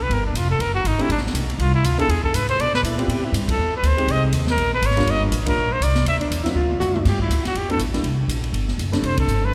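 Sophisticated and relaxed, this short excerpt from a longer small-group swing and bop piece moves at a brisk 242 BPM in 4/4 with a swung feel. A clear trumpet with light vibrato carries the melody up front, while a woody, thumpy upright bass played pizzicato sits close beside it with a dark tone. The drum kit brings a high-tuned snare, punchy kick and an airy, polished sound, with a fill just before the second section begins at 7.0 seconds, and the band lands accents at 3.5, 5.4 and 9.2 seconds. A warm, vintage-sounding grand piano enters at 1.0 second to comp in the background through shifting harmonies that include Dm13/A, Bb7#9 and a closing F69. A breathy, whispered tenor saxophone adds brief second lines in the background with soft attacks and scooped notes. A wet cathedral reverb with a 5.2-second tail surrounds the group, giving it the spacious ring of a church or concert hall.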